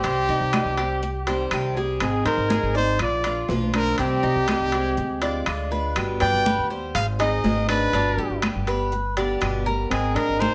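A straight 4/4 Cuban son and guajira groove at 122 BPM in C minor rides on ringing, high-tuned congas set back in a live room, metal-shelled timbales, and very quiet woody claves that enter at 0.5 s, under a growly, thumpy pizzicato upright bass sitting up front. A boxy, picked archtop guitar with old strings fills in the accompaniment, while a metallic, double-strung Cuban tres plays arpeggios. A clean tine electric piano adds a second line from 2.0 s, while a warm solo trumpet with light vibrato carries the danceable, nostalgic melody over moderate studio reverb and chords moving from Cm through Ddim and G to a closing Abadd9.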